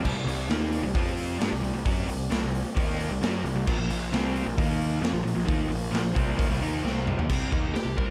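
A straight 4/4 pulse at 132 BPM drives this hard rock excerpt in C minor, and the mood is driving and menacing. A raw garage drum kit sits up front with a punchy kick, medium-tuned snare, hi-hat, crash cymbal and toms, its gritty, saturated sound pumping in a bright stone room, and a drum fill arrives at 6.8 seconds. A crunchy, double-tracked overdriven guitar carries the picked riff through Cm, F5, Bb5 and Eb5, while a fuzz-laden picked electric bass adds punchy, overdriven weight underneath. Far beneath them, a mellow tonewheel organ holds very quiet, round sustained chords through a slow rotary speaker with vibrato and key click, stopping at 7.3 seconds. In the closing moments, a dark, high-gain lead guitar enters at 7.7 seconds for a brief distorted melody, and the whole band plays in a light reverb.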